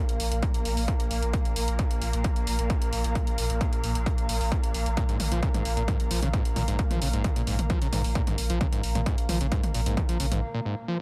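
A distorted, overdriven electronic kick sits up front and drives this intense stretch of peak-time techno at 132 BPM in a straight 4/4, tuned slightly flat to A4 = 436 Hz. Beneath it, a saturated sine sub bass holds a deep, thick Bb1 through a low-pass filter, pumping against the kick. An overdriven analog drum machine adds punchy hi-hat and toms, re-recorded in a large room. A swarming, tense granular drone of detuned sine voices evolves between Bb2 and Bb3, while a lo-fi pad of square and triangle waves warbles nostalgically between Bb4 and Bb5 through chorus. Both of these pump against the kick and carry their own built-in reverb, though the mix as a whole stays fairly dry. At 5.0 s a screaming, squelchy sawtooth acid line breaks in, resonant and aggressive under a filter sweep, and it plays alone through the short break after 10.4 s in this piece cut from a longer work.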